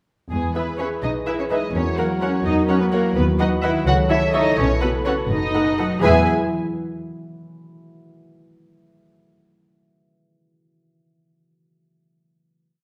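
In a straight 6/8 at 84 BPM in E major, this short, mischievous and whimsical film cue opens at 0.3 seconds with the muted cello section carrying a lush, veiled melody that the muted studio violins double at the octave with a soft, smooth top. A concert harp rings out mellow, fingerpicked broad broken chords, while a clear, punchy French horn section holds sustained chords and the muted double basses underpin everything with close pizzicato and sustained bass. From 0.6 seconds the muted symphonic violins and a background muted viola section add after-beat and sustained chords, all set in a wet recital hall reverb before the cue settles on a final E chord at 6.0 seconds.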